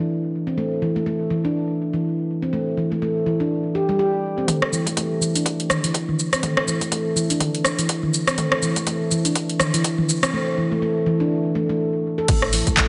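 A softly reverberant, digital-sounding mix with a dark top end opens on a ringing, meditative handpan playing arpeggios over an Am7 chord, its fingertip tone placed up front and treated with sidechain pumping, a low-pass filter and dub echo. At 4.5 seconds this driving afro house excerpt at 123 BPM in A minor moves into a build-up: a punchy, layered electronic kick and an afro-pop kit of cabasa, handclaps, rim click, toms, crash and metallic hi-hats enter in a swung 4/4 over an A5 chord, while a filter sweeps the handpan. A round, very quiet sine sub bass arrives on A1 at 12.3 seconds.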